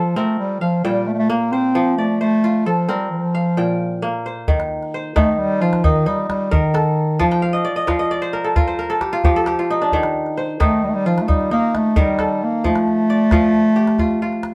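Recorded live in one room with a moderate studio reverb, this flowing, hypnotic excerpt of West African traditional string and xylophone music moves in a straight 12/8 at 88 BPM, where a smooth-topped dark bass clarinet carries a classical-style solo melody up front over bright, crisp, ringing fingerpicked kora arpeggios, a small, close calabash joins at 4.5 seconds, and the kora adds a fill at 7.2 seconds.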